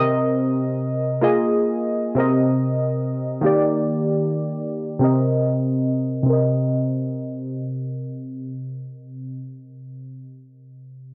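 A straight 4/4 afrobeats pulse at 95 BPM in C minor sets a hypnotic, mellow mood in this excerpt from a longer piece, where up-front warm analog keys with a round, detuned sawtooth tone, fast attack and decaying notes, colored by chorus, a low-pass filter and cassette tape character, play accompaniment from 0.0 to 11.1 s through Cm7, Bb7sus4 and Ebmaj7 changes, with a filter sweep over the opening 6.3 seconds, all captured as a home cassette recording in a small room with moderate reverb.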